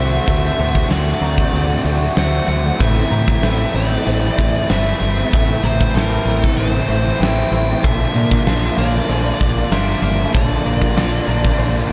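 A dreamy mix soaked in moderate plate reverb wraps this blissful shoegaze and dream pop rock excerpt, where a huge arena drum kit with a fat snare and punchy kick sits up front from 0.3 seconds alongside a growling, overdriven fingered bass. Two picked overdriven guitars play riffs in the background, one biting and bathed in reverse reverb and the other crunchy with subtle chorus, while a very quiet, twangy, direct-recorded clean guitar picks compressed arpeggios. Over the D7, Am and Bbmaj7 changes, a bright, biting lead guitar carries the melody through overdrive and analog delay.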